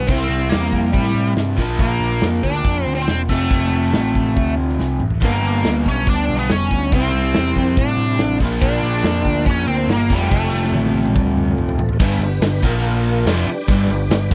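Gritty and swaggering, this short cut from a longer piece is blues rock crossed with southern rock, played at 141 BPM in a straight 4/4 with a dry, close 1970s-style studio sound. A smooth, overdriven lead guitar carries the melody through a wah until 11.5 seconds, while a crunchy, double-tracked rhythm guitar drives the riff up front. Underneath, a bright, growly picked bass with amped overdrive gives the low end its punch, and a big acoustic drum kit with a punchy kick, medium-tuned snare, bright cymbals and toms holds the beat, marking the changes with fills at 4.8 and 10.3 seconds. At 5.2 seconds a tonewheel organ enters in the background with clear, lightly overdriven sustained chords, key click, chorus vibrato and a slow rotary speaker. The progression cycles through C, Bb, F and G before a brief closing turn at 12.0 seconds moves between G and Bb5.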